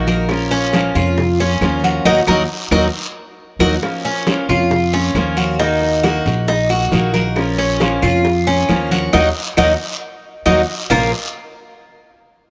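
A Cuban tres sits up front with picked arpeggios on its metallic, double-strung courses, some of them octave-doubled. This nostalgic, danceable excerpt of Cuban son and guajira moves at 136 BPM in a straight 4/4, settling in Bb minor and alternating between Bbm and Ebm before landing on a Bb5 at 10.9 seconds. An up-front pizzicato upright bass gives a growly, thumpy low end, while a dark, picked steel-string acoustic guitar fills in the accompaniment, its finger squeaks audible. In the background, bright, damped congas with soft hands and tight, high-tuned, saturated bongos drive the groove, joined by a raspy guiro and very quiet, close and dry woody claves. The band hits accents together, and a short drum fill at 10.5 seconds leads into the closing chord, all within a light reverb.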